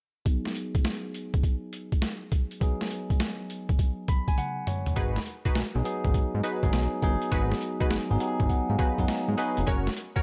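A dark, warm digital ambience frames this slick, punchy new jack swing excerpt at 102 BPM in G# minor, swung on the sixteenths, opening on G#m7 with a bell-like tine electric piano under a phaser and low-pass filter sweep and a gritty, pitched-down boom bap drum kit with a thumpy kick and high-tuned snare, both up front. After a piano fill and a drum fill, a fat, detuned analog bass with ring modulation and a chorused, warbling polysynth comp playing funky filter-plucked stabs both enter at 5.0 seconds. The piano fills again before it drops out at 9.7 seconds as the harmony moves to F#, leaving the overdriven drums, bass and stabs to close.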